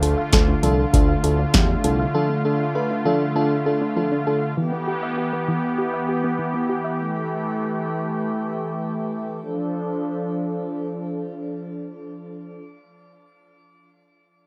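Set in a moderate booth ambience, this cool, nocturnal synth-pop fragment opens with an up-front analog drum machine of deep kick, punchy snare and metallic hats, alongside a smooth gliding sawtooth bass; the drums drop away by 2.0 s and the bass by 2.1 s. A mellow, dark FM electric piano and a soft, detuned pluck arpeggio with delay sit behind them, all under shimmering reverb and a filter sweep, with the pluck dropping out of the background by 7.0 s. A bold, warbling vintage brass pad with vibrato carries the Dm to Em chords up front until 12.6 s.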